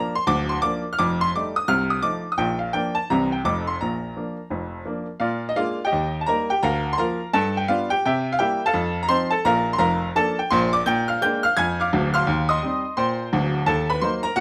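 A solo baby grand piano, brilliant and up front with a short sustain, carries this exuberant, swinging stride jazz passage, cut from a longer piece, at 170 BPM in Bb major, spanning D1 to Ab6 across its 14.4 seconds. Close, detailed microphones and light reverb keep the tone natural, and after an opening phrase built on Bb, F9 and C7 harmonies, a second section begins at 5.2 seconds. That section moves through Bb7, Eb and G7 before closing on Eb6 and Ebm.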